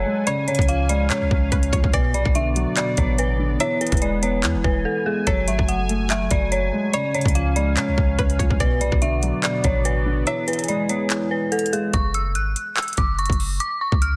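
A half-time trap groove at 144 BPM in 4/4 drives this melancholic, menacing hip hop excerpt in F# minor, built on an electronic drum kit of hard-clipped kick, metallic hi-hats and handclaps placed up front. Beneath it, a clean, sine-based 808-style bass booms deep, with a fast attack and a decaying tail. The lead is a detuned FM synth bell, eerie and inharmonic, colored by chorus, low-pass filtering and digital delay. A boxy, mellow concert grand piano supplies low accompaniment through a low-pass filter. A slow-attack sawtooth pad with a filter swell and chorus holds evolving sustained chords, while a twangy, string-like resonator pluck with a noise layer and filter sweep adds a bright second line in the background, treated with chorus and delay. The harmony cycles through C#, Bm, E and F#madd9, with a brief silent gap at 4.9 seconds, the kick muted from 10.3 seconds, and a short closing section that opens on F#5 at 11.9 seconds before moving to C#.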